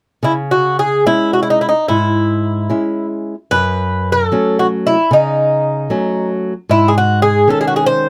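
A mellow, metallic Irish bouzouki carries the melody up front with picked double strings over a small, fingerpicked nylon-string guitar accompaniment in this longing, passionate fado-style ballad fragment, moving freely in rubato through C#m, F#m and G#sus4 in a moderate booth ambience from 0.2 to 8.1 seconds.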